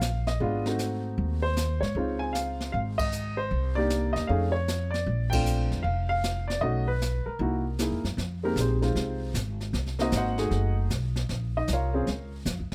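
A swung 4/4 at 154 BPM drives this late-night, smoky jazz piano trio excerpt, with a brushed kit of dark cymbals, a high-tuned snare and a boomy kick sitting behind a woody, thumpy pizzicato upright bass that is up front. A natural-sounding baby grand carries the melody over rich extended chords, and the trio hits shared accents at 2.9 and 5.3 seconds. At 8.2 seconds the music settles into F minor as the piano takes a solo, all captured with close, detailed microphones and little reverb.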